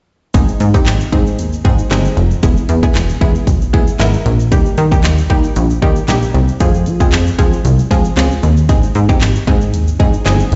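From 0.3 s, a layered electronic pop drum kit with a punchy kick, fat snare, handclaps and hi-hat arrives up front alongside a funky, sawtooth-edged analog bass and a lush, detuned unison pluck, both pumping with sidechain, in a carefree, euphoric dance-pop excerpt in straight 4/4. A grainy acoustic tube shaker sits in the background as the chords move through Ab, E, Eb and Fm before returning to Ab. The sound seems played on a big sound system in a bare room, bathed in large studio reverb with its top end cut off.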